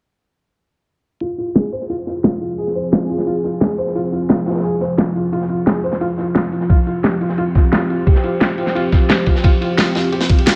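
Lightly reverberant and filtered, this cut from a longer dark technical drum and bass piece at 175 BPM in F minor feels mechanical and tense, as a detuned, resonant sawtooth pad with chorus holds sustained chords and a mellow felt-muted upright piano with audible action noise and digital delay plays arpeggios, both pumping under sidechain and moving through filter sweeps, while a gritty, saturated breakbeat kit with dark cymbals sits low in the mix beneath a huge, up-front electronic snare from 1.6 s and a knocking electronic kick that arrives at 6.7 s as the harmony shifts from Fm to Csus4.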